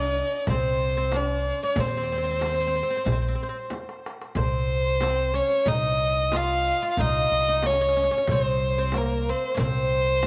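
A clear, bowed violin sings the melody up front with smooth vibrato and a touch of tape echo, leading a soulful, longing Arabic maqam ensemble at 92 BPM in a straight 4/4 that settles into C maqam kurd from 4.4 s. Beneath it, a woody, fretless oud with double strings, plucked with a plectrum, carries a low second line, while a thumpy pizzicato upright bass with steel strings anchors the bottom. From 0.5 s, a clay-shell darbuka played with soft hands and a large, deep frame drum struck with hard hands sit in the background, with a drum fill at 3.7 s, all in a small room with light reverb in this excerpt cut from a longer piece.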